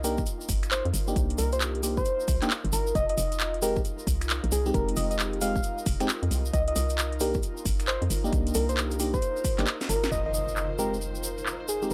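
Skippy and soulful, this swung two-step UK garage excerpt rides a hollow, bouncy FM bass and a punchy electronic kick under a house kit of finger snaps, handclaps, metallic hats and a cracking snare, with a grainy tube shaker, glassy chorused FM electric piano stabs, a round, gentle struck synth lead with vibrato and tape echo, and an airy, breathy pad that pumps, until the kick drops out at 9.7 seconds for a drum fill and, at 10.1 seconds, an electronic impact, a filter sweep on the electric piano and a dark, lush violin section in the background arrive within a dry, gritty, saturated sound.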